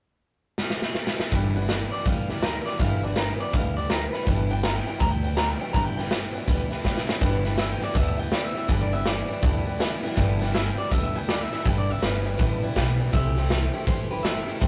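A swung 4/4 pulse at 162 BPM drives this upbeat, retro rockabilly excerpt in G major, kicked off by a drum fill from the raw garage kit at 0.6 seconds, its punchy kick, medium-tuned snare and hi-hat sitting up front with a gritty, saturated edge and a pumping stone-room character. At 1.3 seconds the upright bass, acoustic guitar and piano join on a G6 chord: the pizzicato bass is woody and growly, the picked dreadnought plays a bright, full-bodied accompaniment, and the upright piano stays in the background, intimate and natural with audible action noise and long sustain. The lead arrives at 1.9 seconds on electric guitar through a small old amp, slightly broken-up, compressed and lo-fi, carrying the melody. Around the midpoint a piano fill and a second drum fill lead into a new section, and the harmony moves to C6 near the end. A moderate small-room reverb and tube saturation give the whole take a rough rehearsal-room feel.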